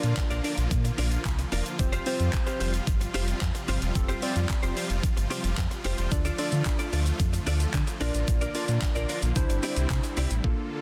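The sub bass with octave sits up front in this summery, euphoric dance-pop excerpt at 111 BPM in F major, its deep, full sine tone pumping with sidechain compression. The pop drum kit is electronic and layered, with a knocking kick, handclaps, shaker and warm hats pushed through overdrive and placed close in the mix. A huge, lush supersaw chord pad of detuned sawtooth unison with a sub octave holds sustained chords that also pump, while round, detuned analog keys with a filter sweep and chorus add mellow accompaniment between Bb3 and D5. A clean, direct-recorded electric guitar plays a picked, compressed riff through ensemble chorus, and a grainy, very quiet tube shaker adds light percussion. The harmony moves from Bb to Fsus2, Dm, Bb and Cadd9 in a dense, heavily limited modern master with little reverb.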